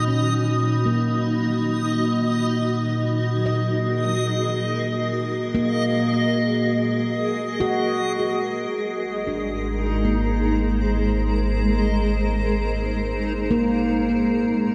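A ringing stainless-steel handpan, played with the fingertips, spins meditative arpeggios through delay over a bright, up-front granular cloud pad and a dark, chorused analog drone, while a reversed, dreamy texture swells behind them and a deep, ominous rumbling drone arrives at 8.7 s to anchor this weightless, luminous free-time ambient excerpt, tuned to A4 = 441 Hz, drifting from B to Gbadd9 and on to Abadd9 in a huge, wet reverb with the grain of cassette tape.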